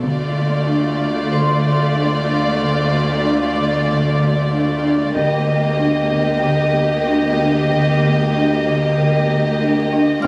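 A woody, rustic marimba riff opens this uneasy, mysterious suspense film-score excerpt alongside hushed sul tasto strings, a close, up-front violin melody with light vibrato, a floating second violin line, background viola, cello and very quiet double bass on a low D, a deep sine sub bass drone and dry taiko hits, while a metallic, ringing vibraphone enters at 1.3 seconds, the taiko drops out until 5.2 seconds as the harmony moves from D minor to E-flat over D, and the whole sits in a wet scoring-stage reverb captured on a phone in a club-like room.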